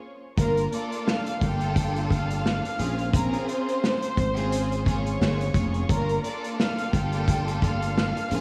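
A swung sixteenth-note groove in 4/4 drives this tough, gritty boom-bap hip-hop excerpt, as the full band enters at 0.4 s after a brief break: an up-front, muffled, lo-fi drum kit with a tight kick and medium-tuned snare sits beside a growly, bright fretless bass holding sustained low notes. Above them, a lush bowed symphonic string section with vibrato and cassette-tape coloring plays the accompaniment, while an intimate chamber violin section carries the melody in soft sul tasto tones touched with analog delay. The whole mix is dreamy and soaked in hall reverb, moving from Gm9 to Bbm9 and back to Gm9 at 5.9 s.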